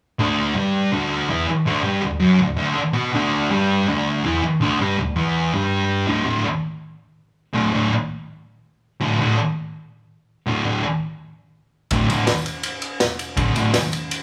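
A thick, dark, double-tracked fuzz guitar riff opens this rowdy, swaggering garage rock excerpt at 164 BPM in D major, landing on a D5 chord at 6.1 seconds before an up-front vintage kit with a punchy kick, medium-tuned snare and dark ride cymbal joins at 11.9 seconds alongside a very quiet, jingly tambourine, the band sounding live in one room under moderate large-studio reverb.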